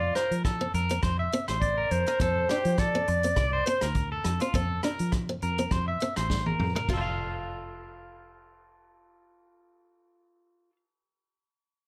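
This joyful, warm highlife guitar-band excerpt in F major opens with a breathy clarinet carrying the melody up front, its jazz-style phrasing marked by vibrato and scooped notes. Underneath, a boxy parlour-style steel-string acoustic guitar picks the accompaniment, while a twangy electric guitar at the edge of break-up plays arpeggios with a slapback echo, and a round, dark fingered bass holds the low end. A vintage drum kit comes in at 0.2 seconds, with a punchy kick, a medium-tuned snare, rim clicks, hi-hat, toms and crash cymbal, and its top is rolled off. The groove moves at 102 BPM in 4/4 with a lightly swung sixteenth-note feel, cycling through F, B♭ and C chords. A drum fill at 6.3 seconds leads into a new section, and the electric guitar and bass play on until about 10.8 seconds, all in light reverb.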